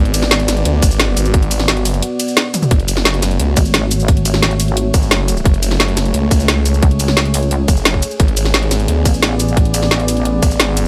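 Mechanical and futuristic, this dark technical drum and bass cut opens with a deep, moody pad of sustained chords pumping under a growling, detuned sawtooth bass, while an overdriven drum kit with a woody snare, bright hats, ride, shaker and toms arrives, joined by a tight, layered electronic kick at 0.8 seconds. A drum fill lands at 2.5 seconds, and at 3.6 seconds a pulsing, mellow pluck wobble bass with chorus adds heavy weight beneath the harmony, which moves from G# diminished to F# minor and back. The mix is dry and loud, with the drums and basses pushed up front.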